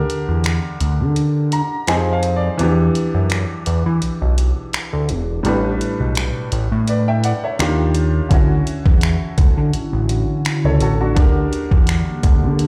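A detuned, thumpy 8-bit drum machine of finger snaps, hi-hat and kick sets a lightly swung 84 BPM groove in this dreamy, tender contemporary R&B piece in D major, alongside a fat sawtooth analog bass with a moving notch filter and a clear, natural concert grand piano that adds a fill from 1.2 to 2.6 seconds, while a moody, warbling ambient pad with chorus and sidechain pumping joins at 9.3 seconds, the mix ringing through a big sound system in a bare stone room.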